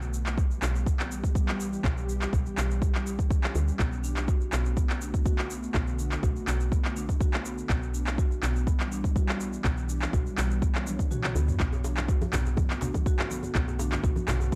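Afro house with a hypnotic, spiritual mood, heard in a short cut from a longer piece. An overdriven deep house kit of handclaps, shaker and toms that carries a large-room character runs from the start, joined at 0.4 seconds by a deep, overdriven electronic kick that sits up front, while a round, woody FM bass with a fast, decaying attack and transformer saturation pumps beneath. An ethereal pad of detuned sawtooth and triangle voices holds slow-attack chords, thickened by ensemble chorus and its own reverb, pumping against the kick as the harmony moves between Em/B and Bm7. From 3.8 seconds a rosewood marimba played with medium mallets adds background arpeggios through tape echo, and after a drum fill where the kick briefly drops out, a tight, cracking djembe with metal rattles and bright, thin-skinned congas slip in quietly near the end. The overall sound is dry and gritty, with little reverb beyond the pad's own.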